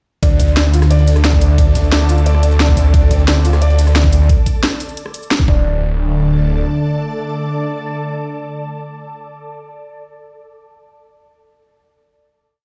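Aggressive and tense, this short, complete piece of dark technical drum and bass runs at 177 BPM in straight 4/4, opening at 0.2 s with a drop where a snarling, growling distorted saw bass in chopped phrases sits up front beside an overdriven, knocking electronic kick and a tight technical kit of cracking snare, bright hats, rim clicks and shaker, all under a faint, gritty looped breakbeat with edits. Above them, a sweeping resonant pad holds sustained chords while a soft, felt-muted upright piano repeats an eight-step arpeggio through sampler grit and delay, and an ethereal pad with phaser and ensemble chorus enters at 1.2 s with slowly shifting chords, each pumping against the kick. The drums fall away, and from 5.7 s the bass lingers briefly before both pads ring out as a final note into a large, bare-room reverb.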